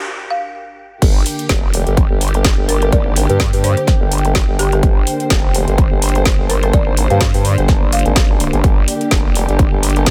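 This gritty, bouncy bass house cut from a longer piece moves at 126 BPM in 4/4 with a light 16th-note swing, set in G phrygian. It opens on a short build-up, where a lush, bowed studio string section holds dark sustained chords with vibrato over a deep, moody, detuned pad that sits in the background with chorus and built-in reverb, both breathing with sidechain pumping. At 0.3 seconds a dry, rustic marimba played with medium hard mallets enters with a woody, mid-forward melody trailed by delay. The drop lands at 1.0 seconds on a G minor chord, bringing in an up-front, nasal vowel-sweep wobble bass, saturated with overdrive and chorus and pumping against a punchy, layered electronic kick. A garage drum kit with a snare, metallic hi-hats and crash cymbal, re-recorded in a small room, fills out the groove, all within a high-pass filtered digital ambience.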